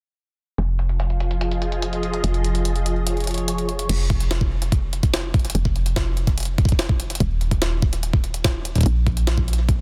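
A woody, round FM bass sits up front through this glitchy, melancholic IDM excerpt at 145 BPM in F minor, its dark, decaying notes running from 0.6 to 9.8 seconds in a low register and carrying a filter sweep during the opening section. Beside it, a jungle sampler-style kit of crash cymbal, hi-hat and a high-tuned snare sounds gritty, compressed and pitched up, its low-pass filtered hats, cymbals, snare and room tinted by digital delay and a filter sweep over the first 3.9 seconds. A soft, silky string machine holds slow-attack sustained chords, Fm7 moving to Db/F, colored by phaser, ensemble chorus and sidechain pumping, before dropping out at 3.9 seconds. The chords then give way and a thumpy, up-front electronic kick arrives at 4.1 seconds, re-recorded in a large room like the rest of the kit. Digital ambience surrounds the parts, and the master is dense and heavily limited.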